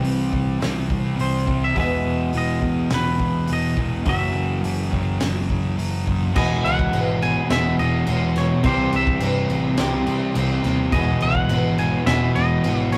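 A dark, up-front fuzz guitar riff drives this blissful, dreamy shoegaze and dream pop rock excerpt at 105 BPM in E lydian, joined by a compressed clean electric guitar riff, a very quiet shimmering, octave-doubled twelve-string acoustic guitar playing arpeggios, a round, foam-muted vintage bass, and a loose indie drum kit with a fat snare, punchy kick and dark cymbals, while a twangy fingered electric guitar melody enters at 1.2 s, all heard in a rough rehearsal-room recording with tube saturation and a wet small-room reverb.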